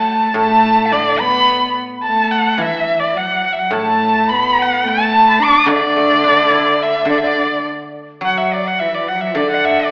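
This short excerpt of Chinese traditional chamber music opens with four instruments sounding together, in a graceful, festive mood at 107 BPM in a straight 2/4, set in the D gong mode. A rich, bowed erhu carries the melody up front, singing with vibrato and expressive portamento. Behind it, a large bamboo dizi plays a second line with an airy tone, buzzing membrane and crisp attack, sitting distant in the background. A bowed cello adds another second line lower down, with a soft attack, vibrato and gliding portamento, while a guzheng played with fingerpicks supplies silvery, ringing accompaniment. The ensemble sits in a wet recital hall reverb with an AM radio character, and the passage moves into a new section at 8.2 s before breaking off at 9.9 s.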